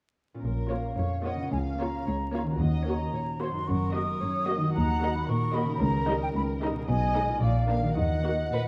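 Magical and sneaky, this playful, whimsical film cue moves at 112 BPM in a straight 2/4, opening in Bb minor before shifting to Eb minor at 4.8 seconds, and it is cut from a longer piece. A ringing, fingerpicked concert harp spins arpeggios from 0.3 seconds, while muted string sections played con sordino fill out the texture: cellos and double basses carry the bass, violas supply accompaniment, one violin section takes the melody and another, distant and in the background, adds a second line. All the strings share a dark, veiled, bowed tone with vibrato, the cellos sitting close. An airy, mellow concert flute sits up front on its own second line, reaching up to Eb6. The harmony winds through mostly minor chords before landing on Bb and resolving to Ebm at 8.0 seconds, all set in a wet recital hall reverb with a dark, warm production and a layer of vinyl crackle.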